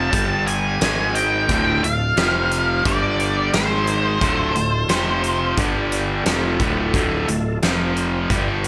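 A straight 4/4 pulse at 88 BPM drives this smoky, heavy cut of blues rock and southern rock in D minor, played by a power trio plus organ and taken from a longer piece. A huge arena drum kit, acoustic and natural in a big room, enters at 0.1 s with hi-hat, a punchy kick and a fat snare, while a growling picked electric bass, direct and amped with overdrive, anchors the low end. Up front, a double-tracked distorted electric guitar grinds out the riff over a cycle of G5, G#5, Dm and F5. Over it, a dark octave-fuzz lead guitar with wah and distortion sings a melody that stops at 5.5 s. Underneath everything sits a very quiet, thick, gritty tonewheel organ, overdriven through a slow rotary speaker with chorus vibrato and holding sustained chords. Light studio reverb gives the whole track a sense of space.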